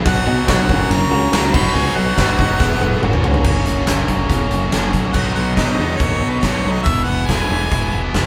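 Classic rock with a sunny, driving feel at 141 BPM in B major, this short cut from a longer piece pairs a bright, overdriven cranked stack guitar with a tight distorted guitar sitting in the background, a growly, punchy fingered electric bass, and a huge arena drum kit up front with a fat snare and punchy kick, while a clear jazz-style harmonica solo full of vibrato, tongue slaps and scooped notes leads over a reedy electric piano with tremolo that stops at 3.4 s after a drum fill from 2.6 s, the whole band sounding live in a moderate stone room.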